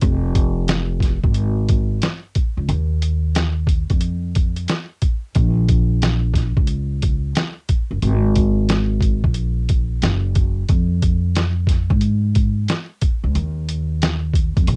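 A woody, gut-strung pizzicato upright bass with dark tube saturation and a muffled, pitched-down sampler-style drum kit, its thumpy kick, medium-tuned snare and hi-hat compressed and coloured by cassette tape, open this nocturnal, smoky jazz-hop excerpt together, both up front at a swung 90 BPM in a dry home cassette recording.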